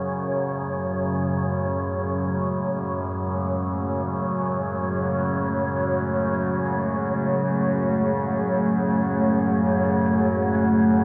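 Desolate and cavernous, this dark ambient drone excerpt drifts in free time on a single F#madd9 chord, with an up-front, detuned drone of moving overtones sounding from the start alongside a breathy, wind-like tuned noise texture, while a deep, moody pad of sustained sub-octave chords enters at 0.4 seconds, all steeped in a vast, echoing cathedral reverb with a cassette tape character.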